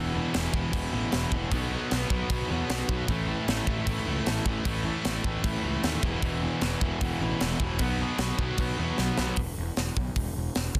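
A straight 4/4 pulse at 153 BPM drives this rowdy, upbeat punk rock excerpt, where a polished, airy metal drum kit sits up front with bright cymbals, a high-tuned snare and a tight kick from 0.3 s, beneath a picked, distorted guitar riff layered in the background with a sludgy overdriven guitar and a double-tracked distorted one, all riding a punchy fuzz bass through E5, B5 and A5 chords until a drum fill at 9.0 s leads the guitars to drop out at 9.4 s, leaving bass and drums in a dense, dry, heavily limited modern master.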